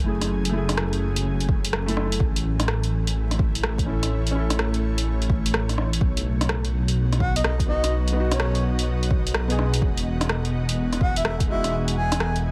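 Melancholic and nocturnal, this future garage excerpt moves at 126 BPM with a 16th-note swing, as a felt-muted upright piano with dub echo and an ethereal, detuned pad with ensemble chorus breathe under sidechain pumping over a dark, rumbling detuned saw bass that sits up front. A deep house kit of hi-hat and rim click and a deep, overdriven electronic kick, both re-recorded in a small room, carry the groove through chords of F#m7, A, B and Emaj7, with the kick entering at 1.5 seconds. At 7.2 seconds a breathy, flute-like synth lead with vibrato, chorus and dub echo takes the melody, all set in a heavily compressed radio sound with vinyl crackle and light digital ambience.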